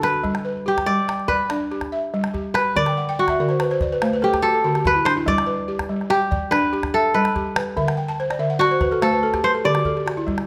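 A crisp, ringing kora carries a flowing, joyful melody from the first moment of this West African traditional piece, cut from a longer performance. It is joined at once by a buzzing, woody balafon playing arpeggios with soft rubber mallets, and a small calabash keeping close, dry percussion. At 96 BPM in a straight 12/8 in G major, the harmony alternates between G and D while the kora solos throughout, and the full, close-miked balafon adds fills from 2.9 s and again from 7.8 s, both it and the kora up front within a moderate recital hall reverb.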